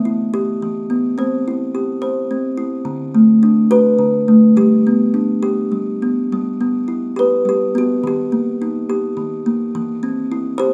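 Gentle and innocent, this short excerpt from a longer children's lullaby in G major moves in a loose, rubato 3/4 at around 106 BPM. A lone kalimba carries everything from 0.0 to 10.7 seconds, its thumb-plucked tines ringing with a woody, hollow-box tone that sits mid-forward and up front. The part ranges from D3 to E5. The harmony drifts from Em through C and D to G, then repeats the opening phrase over G6 before an unexpected turn to Eb, settling on C/E at 9.7 seconds. A moderate recital hall reverb, with a decay of 1.6 seconds, lets each plucked note bloom into the space.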